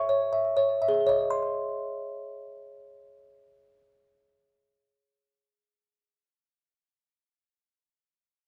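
This classical lullaby for music box is a brief, tender and dreamy passage cut from a longer piece. It moves at 40 BPM, counted in dotted quarters, with a straight 6/8 lilt in Ab major. The solo music box sounds from the start until 6.0 seconds, spanning Ab4 to Db6 with a delicate, tinkling, plucked tone that is slightly out of tune. A slapback echo trails its notes. The opening slows down as a Dbm/Ab chord gives way to Ab at 1.3 seconds, where a new section begins. The sound is close-miked and up front, a dry 1970s-style studio recording with light reverb.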